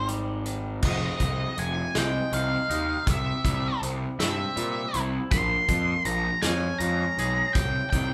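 In a slow 6/8 at 54 BPM, this cathartic, cinematic post-rock excerpt in F minor sets a dark, fuzz-drenched octave lead guitar melody and a growly overdriven picked bass up front with a loose, natural indie drum kit, while a twangy clean electric guitar and a mellow, ringing soft-mallet vibraphone spin arpeggios in the background through Fm7, C and Bbm7, all playing live together in a large studio room.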